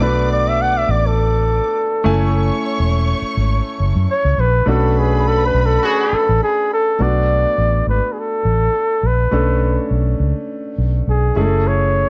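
Cinematic and smooth, this lush 1970s-style soul excerpt at 103 BPM in B dorian, with a gentle swing on the 16ths, features a breathy, mellow flugelhorn with scooped notes and light vibrato carrying the melody up front over a round, punchy, foam-muted electric bass, intimate grand piano accompaniment with audible action noise, and a dark, woody string section bowing a second line until 6.7 seconds, while a distant, roomy horn section adds brief jazz-style stabs at 5.8 seconds, set in light reverb and small room ambience.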